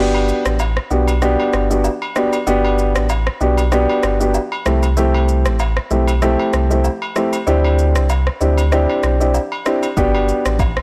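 A blown-out, overdriven recording with light reverb carries this sunny, joyful afrobeats cut at 96 BPM in G major and swung 4/4. A mellow, dark grand piano and a full, up-front sine-and-triangle sub bass with octave move through Gmaj7, C6 and D9sus4 during a break lasting until 10.0 seconds. Beneath them sit saturated agogo bells and woodblock, plus an electronic afro-pop drum kit with a deep kick, rim click, shaker and a softly clipped snare.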